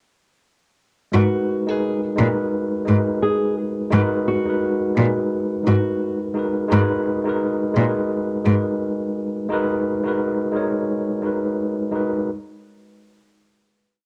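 Hazy and nostalgic, this short hip hop piece moves with a gentle swung sixteenth-note feel over a single G#m9 chord. A mellow tine electric piano, worn and slightly out of tune, plays rhythmic chords in a spread voicing that repeat like a sampled loop, its tone sounding as if heard through built-in speakers. Beneath it, a single rich cello carries a sparse bowed bass line, earthy and nasal with light vibrato and an airy bow, sitting close and up front. A thumb-plucked acoustic flamenco guitar adds a short looping melody, softened by a low-pass filter, plate reverb and analog delay, before dropping out at 6.2 s. The cello stops at 8.5 s, leaving the electric piano to carry on until 12.3 s, while a warbling cassette-tape character with pitch drift and a moderate studio reverb gives the recording its faded, dusty glow.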